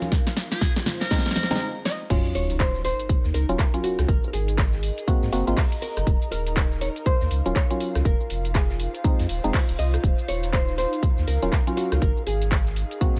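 Hollow, mellow organ stabs pump under a filter sweep alongside an airy, detuned pad, congas and bongos ringing in the background, a very quiet dry reggae kit, a punchy house kit with bright hats and handclaps, and an up-front electronic kick, as this smooth deep house excerpt builds through a drum fill where a buzzy, brilliant muted trumpet plays a short vibrato solo with sampler grit and tape echo. During a brief stop from 1.6 seconds, a dark, clean hollow-body jazz guitar enters at 1.9 seconds with dub echo. At 2.1 seconds the drop lands with a deep, full sub bass and a faint sub drop impact, sitting over swung minor-ninth and seventh chords in a light reverb.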